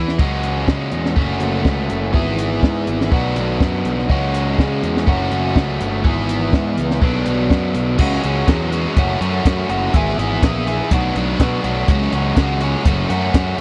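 A straight 4/4 pulse at 123 BPM drives this short indie rock excerpt in F# minor, its mood bittersweet and cool. A biting, overdriven electric guitar, double-tracked and up front, plays a picked riff from the start, cycling through C#sus4, F#m, E/G# and Bm. Beneath it, a fuzz-laden picked electric bass with a punchy, overdriven tone holds down the low end, and a compact cocktail drum kit enters at 0.1 seconds with crash cymbal, hi-hat, a punchy kick and a high-tuned snare. The kit sounds dark and smooth, its top rolled off as if played in a small room. The second section arrives at 8.0 seconds and carries the same chord cycle through to the cut at 13.6 seconds. The recording is dry and close in a 1970s studio style, touched with light reverb.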